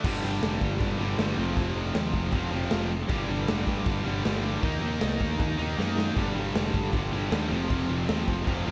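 Dry, this urgent, raw punk rock excerpt sets three bright picked guitars, two overdriven and sitting in the background, one double-tracked, and a tight distorted one, on a G5, F5 and Eb5 power-chord riff, over a punchy fuzz-overdriven picked bass and an up-front, gritty, saturated garage drum kit with a punchy kick, medium-tuned snare and crash cymbal that plays a fill at 5.8 seconds.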